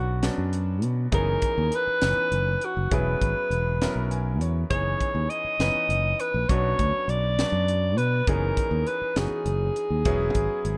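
A breathy alto saxophone carries the melody from the opening moment, its subtone and scooped notes giving this excerpt of electric jazz fusion a vintage, up-front voice touched by slapback echo. Beneath it, a fingered electric bass sits close and direct with a warm, amped tone, while a clear concert grand piano supplies polished, short-sustained accompaniment with a deep low end. A crisp fusion drum kit joins at 0.2 seconds, its airy studio sound built on hi-hat, a punchy kick and a high-tuned snare. The groove moves at 67 BPM in a straight 6/8 in F# mixolydian, cycling through Bmadd9, F#13sus4 and E69 with a funky, soaring mood. The piano steps forward with a brief fill from 3.8 to 4.7 seconds, and light reverb wraps the whole in a dark, warm production.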